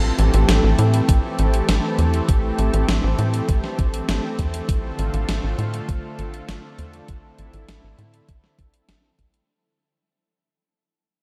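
Soaked in a huge, dreamy ambient reverb, this nocturnal, nostalgic synthwave fragment fades out across its whole length as a lush, detuned unison pad, bright and warbling with chorus, shimmer reverb and sidechain pumping, holds sustained chords that move from Am7 to F6/A at 4.7 seconds. Underneath, a tight, punchy sequencer bass of sawtooth and square waves, with a plucky filter and a mellow decay, drives forward through sidechain pumping and a filter sweep. A gated 80s digital drum machine supplies overdriven hi-hat and a gated-reverb snare from 0.2 seconds, joined at 1.1 seconds by a thumpy, overdriven electronic kick, both re-recorded in a small room.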